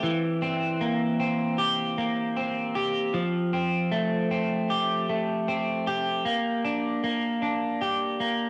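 An electric guitar at the edge of break-up carries this short dream pop fragment alone, picked and placed up front with a warm, slightly broken-up edge. Its tone is bathed in lush chorus and analog delay, sitting between E3 and G4. The mood is melancholic and hazy, moving at a slow 77 BPM in a straight 4/4, tuned to A4 = 441 Hz. The harmony passes from C7 to Fadd9 at 3.1 seconds and settles on Gm, all within a single 8.5-second section cut from a longer piece. A moderate spring reverb and the soft grain of a home cassette recording give the sound an intimate, faded quality.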